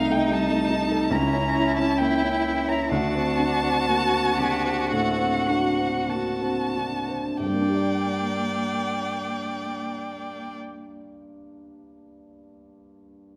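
Yearning and solemn, this slow romantic classical movement for piano quartet in G minor moves with rubato at 43-77 BPM, slowing through its first 7.4 seconds of diminished and dominant harmony before settling on G minor: a distant, expressive first violin carries the high melody with vibrato and portamento, a rich bowed second violin and a focused, smooth-topped cello in the background weave inner lines until all three strings stop at 10.6 seconds, while a dark, mellow, vintage-sounding baby grand sits up front with long sustain and plays on alone to 13.4 seconds, all captured by close, detailed microphones in a wet recital hall.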